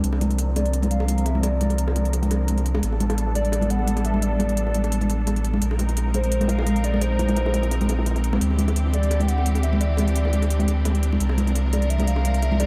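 Liquid drum and bass at 172 BPM in 4/4, this warm, lush excerpt rides a light 16th-note swing, with the tuning sitting at A4 = 439 Hz. A round, deep sine sub bass sits up front from the start, while a rich, bowed string section holds sustained chords with vibrato under a filter sweep that runs through the whole passage. Crisp electronic hi-hats, layered and re-recorded in a small room, sit alongside a very quiet acoustic kit whose dark, rolled-off hi-hat and medium-tuned snare stay in the background, and bright bongos and congas enter at 0.1 seconds. At 0.6 seconds a hollow, woody synth lead in a clarinet-like voice takes the melody in the C5 to G5 range, softened by chorus, phaser and tape echo. The harmony moves through suspended ninth chords, starting on C9sus4 and passing through A9sus4, Bb9sus4 and D9sus4 before returning to C9sus4, all bathed in a lush hall reverb that gives the mix a dreamy, reverb-soaked feel.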